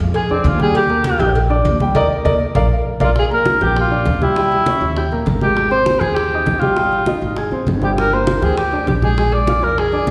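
A mellow cor anglais carries the melody up front in this sunny, danceable Afro-Cuban jazz passage, cut from a longer piece, with light vibrato and a classical touch that still sounds distant and roomy. It is in Eb major at a brisk 200 BPM in a straight 4/4, and the opening stretch features the horn as soloist until the band hits an accent and a drum fill arrives at 2.3 seconds. A dark baby grand piano comps up front, intimate and smooth with a vintage character and audible action noise, while a woody pizzicato upright bass on steel strings anchors the low end. Bright, damped congas with a saturated, compressed edge sit a touch above a round, low-tuned pairing of cowbell and bongos that carries a small-room sound of its own. From 3.2 seconds a new section opens and the harmony moves through Ebmaj9, Eb7b9, Abmaj7, F9 and Ab before settling on Gm and Bb, all bathed in the wet reverb of a church or concert hall.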